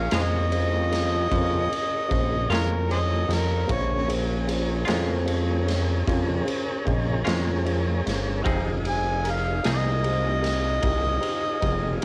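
This home recording on cassette carries a small-room ambience and a tape-worn haze over most of the band, in a soulful, smoky slow blues fragment in a straight 12/8 feel. Up front, a bright, overdriven harmonica takes a jazz-style solo throughout, close-miked, with light vibrato, scooped notes and tongue slaps. Beside it sits a fat, detuned sawtooth bass with a filter pluck, while the raw garage drum kit pairs a boomy kick and medium-tuned snare with ride cymbal in a gritty, saturated, pumping stone room. In the background, a dark, mellow grand piano adds intimate accompaniment with audible action noise, and a smooth tonewheel organ holds sustained chords through a slow rotary speaker. A clean, picked semi-hollow guitar with tremolo and compression comps until 9.9 seconds, as the harmony moves from Bbm7 to Fm7 at 8.5 seconds.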